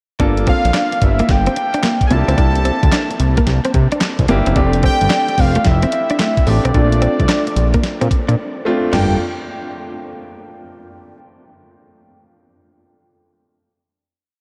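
Confident and bouncy, this short new jack swing piece in G dorian moves at 110 BPM with a hard 16th-note swing, built on a thumpy 12-bit drum machine whose fat snare is layered with handclaps and an up-front, thick sawtooth synth bass that works chromatic approach notes into its synth-funk line. A baby grand piano pushes rootless chords through Gm9, C9, F69 and Bbmaj7, while a scooped, direct-recorded electric guitar plays a muted single-note line through analog chorus in the background, and a nasal analog lead with vibrato, chorus and delay sings hook phrases up high. The whole mix is soaked in a dreamy cathedral reverb, the drums drop out at 8.4 seconds, and a final Gm9 rings from 8.9 seconds.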